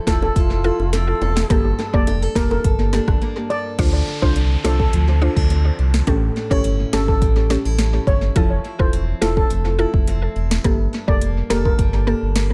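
A shimmering steel pan carries the melody through this sultry, hypnotic dancehall clip in D minor at 105 BPM, its mellow tone trailed by tape echo over a woody, chorused synth pluck and bright picked arpeggios from a steel-string acoustic guitar, finger squeaks included. Up front, a full, sine-toned sub bass with octave sits beside a produced afro-pop kit of deep kick, sharp snare and metallic hats. Tight, high-tuned bongos tap very quietly until 3.2 s, an airy, hollow bamboo shakuhachi with vibrato drifts in distantly at 0.4 s, and after a short break the chords move through Dm7 and A7 from 3.8 s as an electronic downlifter passes beneath, the echo-heavy mix set in a small room.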